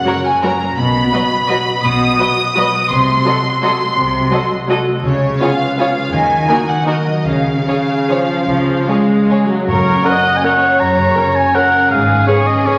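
A lush violin section carries the melody from the opening moment, sitting up front with smooth, even vibrato, while a concert harp rings out fingerpicked arpeggios beneath it. A second, more distant violin section plays a focused line, and a viola section with a smooth top fills in the accompaniment. From 0.8 seconds, cellos with expressive portamento and a double bass section in the background carry the bass. This elegant, festive orchestral ballroom waltz in 3/4 moves with a flexible rubato feel through a sequence that touches a diminished seventh and a minor chord. At 9.7 seconds, as the opening theme returns, a clear solo oboe steps up front with light vibrato as a second line, and timpani struck with medium mallets sound briefly in the background. The recording is bathed in a wet scoring-stage reverb with a layer of vinyl crackle, and it is cut from a longer piece.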